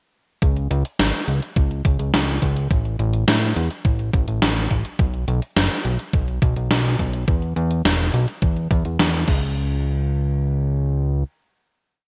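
Nocturnal and moody, this short synthwave piece in C# minor moves at 105 BPM in a straight 4/4, with everything arriving together at 0.4 seconds. A fat analog bass drives the verse with thick, detuned sawtooth and square-wave tones, playing eighth notes ranging between E1 and A2 with a fast attack and a plucky filter, tube-saturated, pumping with sidechain, and sitting up front. Alongside it, an overdriven electronic kick thumps like a sampler, re-recorded in a small room. A gated 1980s drum machine supplies the backbeat with closed hi-hat, a snare drenched in gated reverb, and crash cymbal, also overdriven and sitting close. The drums drop out at 9.4 seconds, leaving the bass to carry the final hit until it stops at 11.2 seconds, all framed by light reverb and a bright, retro digital sheen.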